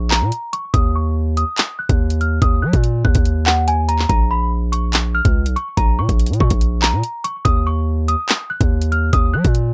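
Drill hip hop at 143 BPM with a half-time feel, this dark, ominous passage is cut from a longer piece and moves between Bbm and Ebm chords. A small, bell-like celesta carries a delicate, sweet melody high in its range through slapback echo and a low-pass filter that sweeps during the first 4.1 seconds, while a heavy, saturated 808-style bass with a fast attack and a noise layer sits up front. An electronic drill kit of knocking kick, metallic hi-hats and handclaps drives the track, and the whole recording feels dry and close, with little reverb.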